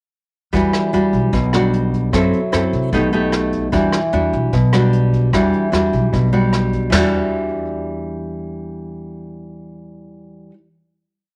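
At 0.5 s, a fingerpicked nylon-string guitar, an upright bass and a vintage brush drum kit begin together in this short, intimate and wistful bossa nova in E minor at 150 BPM. The guitar sits up front with a classical, old-stringed tone, playing thumb bass and syncopated plucked chords through Em9, F#m7b5 and Baug7 back to Em9, while the pizzicato bass sounds woody and growly on dotted root-and-fifth lines. The kit keeps a soft brushed groove with dark cymbals, a punchy kick and a rolled-off top until it stops at 7.0 s, and guitar and bass then hold a final chord in a light small-room reverb until about 10.6 s.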